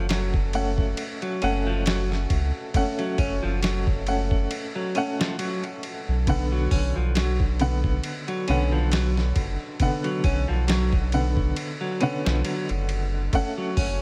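A deep, round dub sub bass sits up front, soft and sustained with a fast attack and a triangle-and-square-wave tone thickened by tube saturation. Alongside it, an upright piano supplies woody, polished accompaniment, colored by tremolo and tape echo. A clean electric guitar picks dark arpeggios through spring reverb and tape echo, while a gritty, compressed sampler-style soul drum kit arrives at 0.1 s with a thumpy kick, medium-tuned snare, hi-hat and ride cymbal, its tape-tinged sound set in studio reverb. This dark, brooding trip hop excerpt moves at an unhurried pace with a lightly swung feel, shifting from F#m to Bm at 6.3 s and returning to F#m at 13.3 s. A digital ambience surrounds the parts, cut from a longer piece that stays within a single section.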